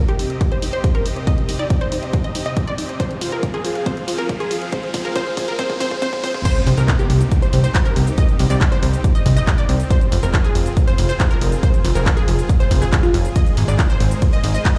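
The sound is dry up close yet carries the ring of a big sound system in a bare room, with a large studio reverb, a high-pass filter and a faint mains hum. This is soaring, emotional uplifting trance at 139 BPM in 4/4 and C minor, cut from a longer piece and moving through Cm, Fm and Abadd9. A build-up stacks a riser, a filter sweep, a drum fill and a swell, while a bright, detuned supersaw pad holds slow-attack chords with a sub octave and long release, and a background unison pluck with a sine edge and delay runs arpeggios, both pumping under sidechain. Throughout, a lush, full-bodied, wave-folded unison pluck carries the melody through digital delay, its fast attack giving a crisp filter pluck. From the opening moments, a heavy, layered electronic kick sits up front, re-recorded in a large room alongside a techno kit of crash, ride, handclaps, hi-hat and shaker that pumps and is filtered, and at 6.5 seconds the drop lands. 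A funky analog bass mixing sawtooth and square wave enters at 6.7 seconds, forward in the mix and pumping beneath the pad.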